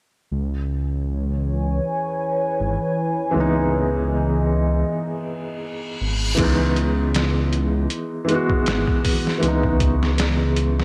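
A dreamy, reverb-soaked mix in a lush hall sets a smoky, brooding trip hop mood at 79 BPM in C# minor, opening on a C#m7 chord as a deep, rumbling detuned saw bass with a beating unison tone enters at 0.3 seconds, soon joined by a moody, wave-folded ambient pad holding sustained chords with chorus and slow-attack swells of sound. A soft, felt-muted upright piano arrives at 3.3 seconds with intimate, mellow accompaniment coloured by tremolo and tape echo, and an electronic reverse cymbal leads into the pad's exit. At 6.4 seconds a gritty, pitched-down sampler-style drum kit joins the bass and piano with a thumpy kick, medium-tuned snare, hi-hat and crash, overdriven and up front with a lightly swung sixteenth-note feel in this brief excerpt from a longer piece.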